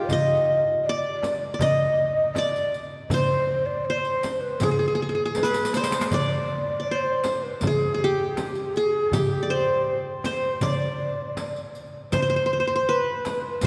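An Arabic maqam ensemble piece at 80 BPM in a straight 4/4, hypnotic and soulful, cut from a longer performance. The qanun carries the melody up front, its fingerpicked triple strings bright-edged and acoustic, moving between F4 and Eb5. Behind it a breathy, mellow ney plays a second line from G4 to Eb5, end-blown and tongued with vibrato, its hollow reed-cane tone rolled off in the highs and set in the background. Percussion comes in at 0.1 seconds: a crisp metal-shell darbuka struck with hard hands, a close frame drum, and a riq with bright jingles in a small-room sound, with a drum fill between 5.4 and 6.1 seconds. A wet church reverb with a long tail surrounds the ensemble, giving it the spacious sound of a church or concert hall.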